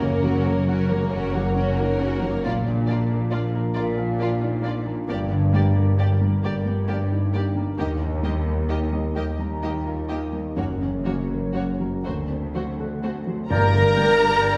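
Moving and bittersweet, this cinematic film-score fragment drifts in a rubato 6/8 at roughly 40-46 BPM. A distant, lush violin melody and an expressive second violin line sing over a dark, intimate baby grand piano with audible action noise and ringing fingerpicked harp arpeggios, joined by a background viola section, a smooth cello section and a woody double bass section, the strings all bowed with vibrato. As the harmony passes from Gb through Bb, Gm, Eb and Gb again to a D7 and settles on Gm at 13.5 s, a clear oboe, a very quiet clarinet, a barely audible airy flute, a mellow French horn section holding sustained chords and articulate hard-mallet timpani on G2 join briefly, all set back in a wet scoring-stage reverb.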